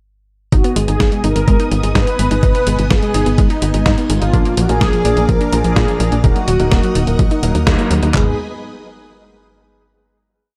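Italo disco at 126 BPM in G# dorian, nostalgic and melodramatic, where a gritty, compressed sampler-style kit drives a thumpy four-on-the-floor kick with handclaps and toms under a disco machine beat of closed hi-hat and snare, a punchy sequenced sixteenth-note sawtooth bass sits up front, a bright detuned analog pluck arpeggiates in the background with chorus and tape echo, a lush string machine ensemble holds sustained chords, a brassy mellow synth brass lead carries a motif-based melody with vibrato and tape echo, and a worn baby grand piano joins at 4.3 s with dotted-rhythm stabs before a band accent at 7.7 s and a final G#m chord from 8.1 s, all in a dark production with light digital reverb and a faint mains hum.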